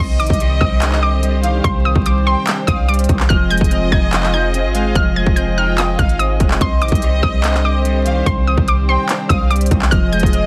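Trap-leaning hip hop in C minor at 145 BPM with a half-time feel, this brooding, melancholic clip is cut from a longer piece and moves between Cmadd9 and Fm7 chords. A warbly, dusty pluck carries the melody high up, its detuned sawtooth tone softened by a filter sweep, chorus and digital delay, while a lush violin section adds a smooth second line beneath it, also touched by delay. A clean semi-hollow electric guitar plays accompaniment through an ensemble chorus, and a dark chamber string section holds sustained chords with a soft, sul tasto bow and light vibrato. Underneath, a deep, boomy 808-style bass with a mellow sine body sits up front alongside a trap kit that comes in at 0.2 seconds with a hard-clipped kick, crisp hi-hats and handclaps. The mix has a digital ambience and vinyl crackle over a dense, heavily limited modern master.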